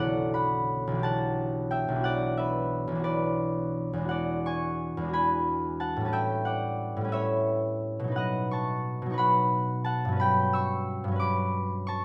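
A solo concert harp, fingerpicked and ringing up front in a moderate stone-room reverb, spans B1 to E6 in this gentle, wistful classical fragment cut from a longer piece, its loose, rubato 6/8 pulse moving from Bm9 through E13 and A9 to a final Gmaj7#11 at 10.2 seconds.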